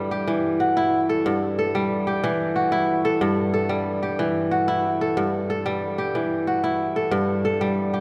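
A solo kora opens the recording, its bright, crisp, fingerpicked strings ringing up front and spanning G2 to B4 in a flowing West African traditional piece at 123 BPM in a straight 12/8. The harmony rocks steadily between Em and Gsus2 throughout the 8-second passage, lifted from a longer performance. A long cathedral reverb, with a 6.3-second decay, wraps the instrument in the resonant space of a church or concert hall, lending the music a warm, enveloping glow.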